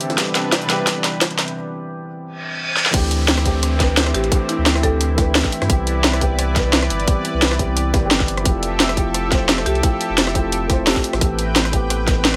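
Lush and rolling, this liquid drum and bass excerpt moves at 174 BPM in 4/4 with a gentle swing on the sixteenths, cut from a longer piece. A felt-muted upright piano, dark and intimate with audible action noise and tape echo, plays accompaniment beneath a thick, detuned unison pad whose chorus-treated, sidechain-pumped chords glow bright over Cmaj7, D9sus4 and Fmaj9 before settling on Am9. The opening build-up brings drum fills and a short break, with a reverse cymbal and downlifter sitting in the background ahead of the drop at 2.9 seconds, where a round, sine-like sub bass enters. Up front, an electronic drum kit delivers a cracking snare, hi-hat, rim click and crash over a tight, layered kick, while a gritty, pitched-up sampler-style jungle kit with a high-tuned snare adds a tape-warm layer farther back. A buzzing marimba with hardwood bars and medium hard mallets offers brief, woody, airy melody phrases from 4.1 and 9.7 seconds, touched by tape echo. 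Light digital reverb frames the mix with a soft sense of space.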